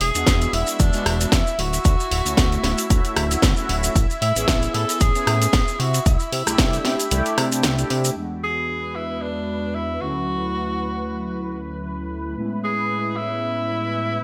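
A swung 4/4 groove at 114 BPM drives this sunny, feel-good nu-disco piece in E mixolydian, built on a punchy electronic kick that stops at 6.7 seconds and a tape-warm house kit of cracking snare, hi-hat, rim click and cabasa, with vintage maracas in the background and a fat, detuned analog bass with sidechain pumping up front until both kit and bass stop at 8.1 seconds. Over chords moving from E7 through Dmaj7, Amaj7 and C6, a lush, bright unison pad with chorus and phaser and a round, dark synth brass with vibrato and delay hold sustained harmony, while a distant, roomy tenor saxophone carries the pop-style melody through digital delay. The bright 1980s-style digital production adds light reverb.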